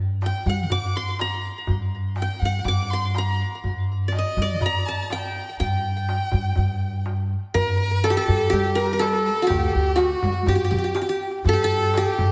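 Festive and warm, this short cut from a longer Arabic maqam ensemble piece moves at 123 BPM in a straight 4/4, set in G maqam suznak with tuning at A4 = 436 Hz. A bright-edged, triple-strung qanun carries the melody up front through a tape echo, while a clear, focused bowed violin with vibrato plays a close second line, and a woody pizzicato upright bass on steel strings anchors the low end from 0.0 s. A crisp, deep metal-shell darbuka with a vintage, band-limited tone and hard hands supplies the percussion, a lush 2.1-second hall reverb soaks the mix in a dreamy haze, and a new section arrives at 7.6 s.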